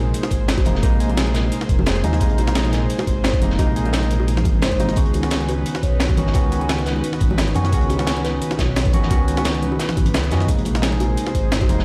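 Lush and dreamy, this short cut from a longer liquid drum and bass piece pairs a worn, slightly out-of-tune tine electric piano with delay against an airy, breathy pad that pumps with the sidechain and a ringing, harp-like synth pluck whose arpeggios trail tape echo in the background, all moving between Bb9sus4 and Db9sus4 chords. Underneath, a deep, rumbling detuned saw bass anchors the low end, while a thumpy electronic kick, a gritty sampler-style breakbeat kit with a high-tuned snare, and a saturated, rolled-off second breakbeat kit drive the groove. Soft-handed bongos and congas sit in the background, and the whole mix carries the boom of a big sound system in a bare stone room.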